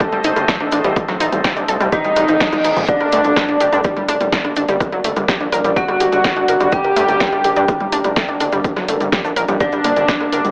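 A light reverb and digital ambience give this melancholic, cinematic melodic techno excerpt the sound of an AM radio, as it moves at 125 BPM in G harmonic minor from an Adim chord to Gm at 2.9 seconds. A fat, nasal analog lead carries the melody over a warbling, lo-fi pluck playing arpeggios, an eerie, inharmonic detuned bell line, a deep, moody ambient pad of sustained chords and a gritty, aggressive driven synth bass, all pumping to the sidechain. An overdriven electronic kick and a punchy analog drum machine of hi-hat, rim click, snare and toms drive the groove with a grainy cabasa in the background, and a very quiet reverse cymbal from 2.1 to 2.9 seconds overlaps a drum fill running from 2.4 to 2.9 seconds.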